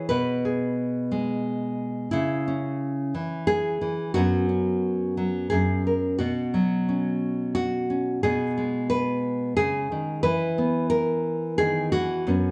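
Hopeful and nostalgic, this short folk excerpt, cut from a longer piece, features a solo fingerpicked nylon-string guitar with a full-bodied, deep classical tone, set up front in a roomy studio reverb at 89 BPM in a straight 3/4, moving through G#m/B, C#m and F#sus4 before a second passage from 6.2 seconds turns to Bsus2 and settles on E5.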